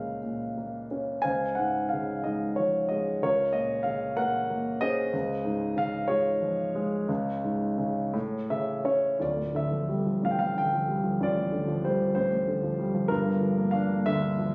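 A warm, up-front grand piano opens on a Db6 chord and plays this calm, peaceful classical passage alone in Db major, in 6/8 at 56-64 BPM with free rubato, moving through Dbmaj7 and Gbmaj7/Db voicings across a span from D1 to Ab5, adding a brief fill at 8.1 seconds and shifting at 9.2 seconds to Dm11 and then Gm7, all captured as a fragment of a longer piece with a casual in-room phone sound and light reverb.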